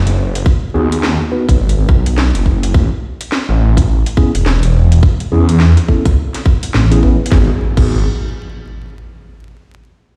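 Swung sixteenths drive this swaggering, funky glitch hop fragment, where a tight, up-front electronic kick arriving at 0.5 s sits under a layered kit of cracking snare, metallic hi-hats, rim clicks and crash cymbal. A swirling, thick detuned saw bass, saturated with phaser and overdrive, dominates the low end under a filter sweep, while a mellow tine electric piano plays stabs treated with sidechain pumping, low-pass filtering and tape echo, moving from G#m7 to A. At 7.3 s the harmony returns to G#m7 as an electronic impact hits, and the whole fragment sounds as if played on a big system in a bare stone room, with vinyl crackle.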